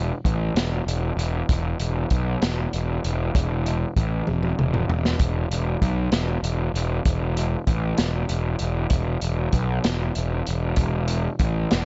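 In a slow, straight 6/8 at 64 BPM by the dotted quarter, this dark, mysterious psychedelic rock excerpt opens with a round, fuzz-soaked picked electric bass growling low between E1 and B1 at 0.0 seconds, joined at 0.2 seconds by an up-front vintage drum kit of hi-hat, tight kick, medium-tuned snare and toms with a smooth, rolled-off top, which plays a drum fill at 4.3 seconds, all in a dry, dull-edged mix.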